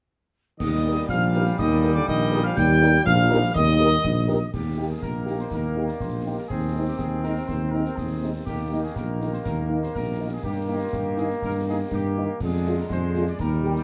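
Close, detailed microphones and light reverb frame this festive, spirited military-style march for wind band, cut from a longer piece, where a mellow trumpet section carries the melody over sustained chords from a clear trombone section, a dark tuba bass up front, a French horn section's accompaniment, and concert snare drum, clash cymbals and concert bass drum, while a euphonium with vibrato and a wooden piccolo add second lines until 4.5 seconds.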